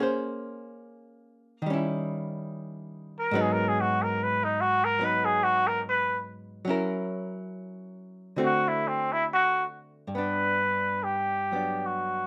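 A nasal, breathy straight-muted trumpet with light vibrato, scooped notes and a slapback echo sings a late-night, romantic swing melody from the first second, over a dark, clean, hollow-body archtop guitar accompaniment, in a dry open-air jazz fragment where both parts sit up front and the trumpet's solo runs until 10.1 seconds.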